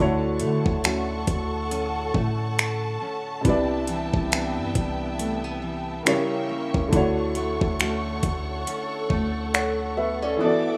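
A small room ambience and studio reverb give this short cut from a longer contemporary R&B piece the feel of a rough home demo, smooth and dreamy at a slow 69 BPM in 4/4 with a light swing on the sixteenths, in D major. A soft, felt-muted upright piano carries the accompaniment in an intimate, mellow tone, while a nylon-string guitar adds bright, full-bodied fingerpicked arpeggios, complete with audible finger squeak. Above them, a clear studio string section holds lush, bowed chords with gentle vibrato and a smooth top. A deep, boomy 808-style bass underpins everything, and an up-front, electronic R&B kit enters at 0.4 seconds with finger snaps, metallic hi-hats and a knocking kick, dropping out at 9.8 seconds. The harmony moves from Dmaj7 to Cmaj9, passes through C#dim7, and settles back on Dmaj7.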